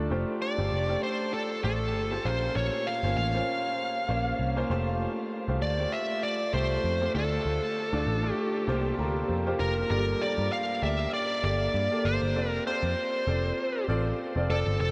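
This 1980s-style pop excerpt moves at 98 BPM in F major, its gently swung sixteenths carrying an uplifting, romantic mood. A clear, polished baby grand piano sits up front with a subtle chorus, laying down chords such as Fadd9, Bbmadd9 and Dm. Beneath it, a vintage muted picked electric bass gives a dark, round, foam-muted low end. From 0.4 seconds a smooth overdriven lead guitar carries the melody, its warm tone trailed by analog delay. The whole mix is soaked in a huge ambient reverb with a seven-second tail, giving the piece a dreamy quality. At 9.9 seconds the harmony shifts to a new section that moves through Gmadd9 and settles on F6.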